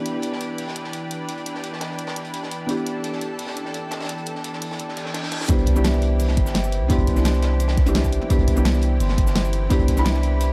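Uplifting and warm, this liquid drum and bass cut opens on an Em7 chord, where a soft, felt-muted upright piano with tape echo sits over a lush, detuned unison pad that pumps against the sidechain, while a gritty, saturated breakbeat kit with rolled-off top blends with a fat-snared pop kit and shaker. A reverse cymbal rises in the background from 4.9 seconds into an impact as the drop lands at 5.5 seconds on Cmaj7. There a deep, mellow 808-style bass sits up front beside a punchy electronic kick, and ringing vibraphone arpeggios with tape echo join, all inside a dark production with light small-room reverb.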